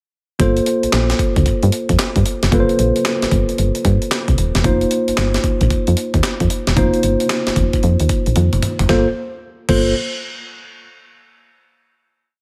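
A gritty, pitched-up sampler-style breakbeat kit drives this bouncy, punchy new jack swing R&B piece with a hard-swung drum-machine beat, thumpy kick and snare layered with clap, while a round, dark FM bass plays a swung synth-funk line with muted ghost notes and chromatic approach notes, and a worn, slightly out-of-tune tine electric piano holds mellow drop2 chords with grace notes moving from Gm11 to F7sus4, until a drum fill at 8.4 seconds leads into a final Gm11 that rings out in a moderate plate reverb.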